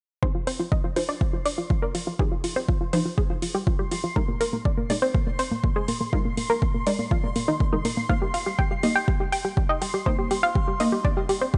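An up-front analog pluck, round and bright with a sawtooth edge and a filter sweep, spins arpeggios through this bittersweet, dreamy progressive house excerpt at 122 BPM in F dorian, pumping with the sidechain alongside lush, detuned unison stabs over an Fm7, Bb7sus4 and Cm7 progression. A punchy, overdriven kick drives the 4/4 groove from 0.2 seconds, metallic hi-hats join at 0.5 seconds, and a reversed, granular swelling texture rises high above from 1.4 seconds. Light reverb and digital ambience give the mix a soft sheen, with the top end kept below 10.7 kHz.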